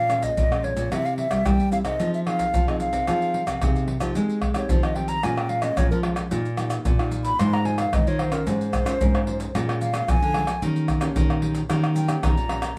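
A straight 4/4 samba and choro groove from deep surdo, pandeiro, tamborim and soft-handed maracas carries this yearning, nostalgic excerpt, where a full-bodied fingerpicked nylon-string guitar comps and a second nylon-string guitar plays the bass line beneath a breathy, hollow silver concert flute with vibrato that moves into a solo at 4.2 seconds, all heard as a band playing live together in one room with moderate studio reverb.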